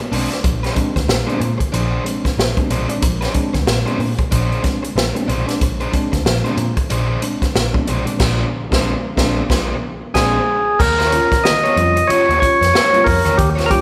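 Funky and gritty, this swung 93 BPM funk excerpt in Bb mixolydian sets a punchy, airy big-band drum kit, a dark, foam-muted picked bass, crunchy overdriven guitar with spring reverb and mellow tine electric piano stabs over a Bb9 vamp, with a band accent from 8.2 s, an up-front, lightly overdriven tonewheel organ with key click taking the melody at 10.1 s, and a move to Eb9 at 10.8 s, all heard as a band playing live in one large studio room.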